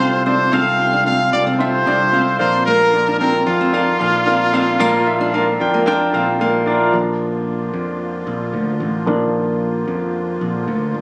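A straight 4/4 pulse at 112 BPM drives this uplifting pop excerpt, cut from a longer piece and moving from F/C to Bb. A clear, smooth-topped trumpet carries the melody up front with vibrato, while a fingerpicked steel-string acoustic guitar plays a riff beneath it until 6.8 seconds. A polished, present baby grand piano supplies accompaniment throughout, and a growly, punchy picked electric bass anchors the low end with a direct, amped bite. A reedy musette accordion holds very quiet sustained chords with a shimmering tone. After the trumpet drops out at 6.4 seconds, the piano takes a solo from 6.9 seconds to the close, heard through moderate studio reverb, small room ambience and compression, captured on a phone in the room.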